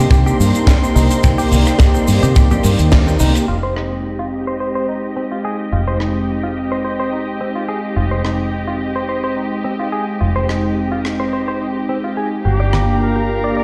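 A lightly swung 107 BPM groove in 4/4 drives this cosmic, groovy nu-disco excerpt in F dorian, with an up-front tight kick through the first 3.0 seconds, a mid-forward funk kit of high-tuned snare, hi-hat, rim click and shaker, a foam-muted fingered bass, and very quiet, low-tuned congas played with soft hands. A smooth, detuned sawtooth pad with chorus and delay sits up front beside a bright, twangy clean guitar riff, while a dark, veiled con sordino violin section holds distant bowed chords that pump and pass through a filter sweep from 3.5 seconds as the harmony moves from Cm7 to Fm9. At 12.4 seconds a mellow, punchy trumpet section enters just as the harmony turns to Gm7, with light vibrato and tape echo, all set in a plate reverb with a stone-room ambience.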